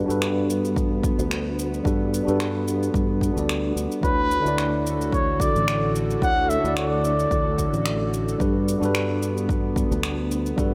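A cup-muted trumpet, veiled and whispered with a tape echo, carries an intimate, up-front melody from 4.0 to 8.1 seconds over a relaxed sunset chillout groove at 110 BPM with a light sixteenth-note swing. Beneath it, a clean tine electric piano moves through a filter sweep and digital delay, an airy, detuned pad holds chorused chords, and a growly fretless bass sustains low notes. An electronic shaker and finger snaps enter at 0.1 seconds, and a punchy, overdriven electronic kick joins them at 0.8 seconds. The harmony shifts from Gmaj7 to Dmaj7 and back in this short excerpt, all set in a light digital ambience.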